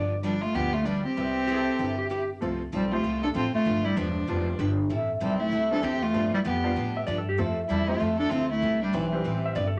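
A brisk, swinging 4/4 at 193 BPM drives this cheerful country passage in C major, cut from a longer piece, with a woody, growly pizzicato upright bass thumping up front while a full-bodied picked acoustic guitar and a jangly, detuned honky-tonk upright piano fill in the accompaniment. A mellow bass clarinet carries the jazz-style melody with light vibrato, joined by a biting, intense bowed fiddle and a dark, clean slide lap steel that sits out after 2.3 seconds and returns at 7.0 seconds. The blend sits in a wet studio reverb, moving from G7 and Cmaj7 through F, Am7 and Fmaj7.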